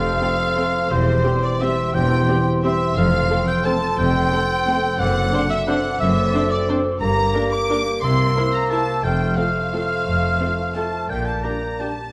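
A festive, sweeping orchestral ballroom waltz in F major at 177 BPM, cut from a longer piece, moving in 3/4 with uneven beats and rubato as a lush, vibrato-rich studio violin section carries the melody in the background. A focused symphonic violin section, a prominent oboe, a clarinet and a pure, distant silver flute weave second lines, while a dark bassoon and smooth violas fill in accompaniment, a French horn section holds sustained chords, and a ringing, thumb-plucked harp spreads arpeggios. Cellos and double basses anchor the bass until about 11.4 seconds, all set in a moderate scoring-stage reverb.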